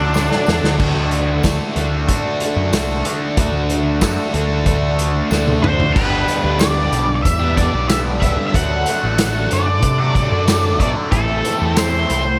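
A straight, driving 4/4 groove at a moderate pace opens this brooding classic rock excerpt, with a vintage acoustic drum kit built on a punchy kick, a medium-tuned snare and dark cymbals, its pumping small-room character rolled off at the top. Drum fills arrive at the start and again just before the 6.0-second mark, where the harmony moves from D to G, later returning to D and landing on A minor. Underneath, a growling picked electric bass sits up front, overdriven and punchy, while a very quiet, jingly tambourine adds a close, dry shimmer. Two picked rhythm guitars carry the riff throughout, one biting and overdriven with phaser and slapback echo, the other bright and distorted with overdrive and the same short echo. An octave-fuzz lead guitar, dark and distorted with wah and slapback echo, flickers briefly at the opening and then takes the melody from 5.6 seconds onward. A lush hall reverb gives the whole band a big arena sound.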